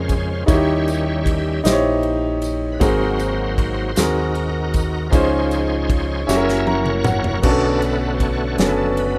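Set in a small room with a rough home-demo sound and lossy artefacts, this short, soulful and reverent slow gospel excerpt in 6/8 features a bright, shouting tonewheel organ soloing through slow rotary speaker, light overdrive and chorus vibrato over clear, up-front grand piano accompaniment, a round, dark fingered electric bass, a punchy acoustic drum kit in a pumping room, and a jingly tambourine in the background, with drum and piano fills arriving at 6.3 seconds before the chords shift at 7.4 seconds.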